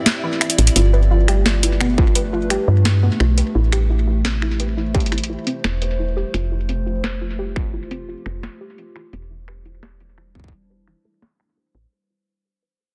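Dense and heavily limited with a light reverb, this short IDM fragment, cut from a longer piece, sounds glitchy and intricate under a nostalgic lo-fi haze. A dark, warbling pad holds sustained chords throughout, colored by chorus, phaser and its own reverb, while a dusty, detuned pluck spins arpeggios through chorus and delay. A booming analog drum machine with a tonal snare, metallic hats and finger snaps opens with a brief fill, its snare softly clipped and its hats filtered, with delay trailing behind. A woody, round FM bass sits up front from 0.6 seconds, and a distorted, overdriven electronic kick punches in at 2.0 seconds before stopping at 10.5. Filter sweeps shape the pad, pluck and drum machine as the whole passage fades out over a chord cycle that moves from Gadd9 through Am7 and Fadd9 to Cadd9/E.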